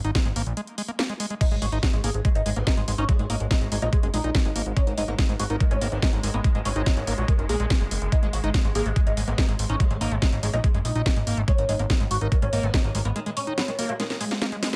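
A squelchy, gritty acid bass riff, distorted and pumping with dub echo, opens this driving, intense psychedelic trance excerpt in G# minor at 143 BPM, over a fat, detuned analog sawtooth bass, an up-front overdriven knocking kick and a techno kit with a cracking snare, hi-hat and crash recorded in a large room. At 1.4 s a woody, plectrum-plucked fretless oud takes the melody through phaser and dub echo, joined by a very quiet wobbling formant-sweep bass line and, from 3.4 s, a swarming, tense, warbling granular drone on G#. Brief breaks interrupt the groove, and a drum fill closes the final stretch from 14.0 s.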